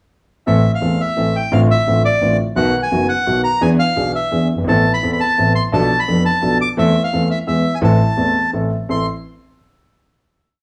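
A small room with moderate studio reverb frames this brief, melancholic and tense tango in A minor, a complete piece in 3/4 at 171 BPM played with a rubato feel. A reedy, mid-forward bandoneon sits up front, carrying a motif-based melody in sentence-like phrases between D5 and D6. Beneath it, a warm concert grand piano with deep, smooth, vintage bass keeps a waltz-time tango rhythm accented on the first beat through chords from Am and E7 to Bm7b5. The music returns to A minor at 7.8 seconds, and a final chord rings from 8.9 seconds.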